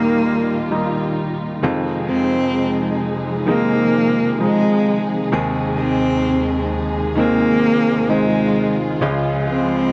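A slow, straight 4/4 pulse at 65 BPM sets the pace for this short pop excerpt in F minor, its mood full of longing and heartbreak. Up front, a single bowed cello carries the melody with a rich, focused tone and vibrato, though it sounds somewhat distant. Beneath it, a bright, polished baby grand piano plays accompaniment while a lush studio string section holds sustained chords, its bowed vibrato and portamento giving an expressive, smooth-topped glow. A clean, compressed electric guitar, recorded direct, picks arpeggios in the background. The harmony moves from Eb through Fm7 and Ab/Eb before settling on Db at 9.0 seconds, all captured in a dry, close 1970s-style studio sound with light reverb.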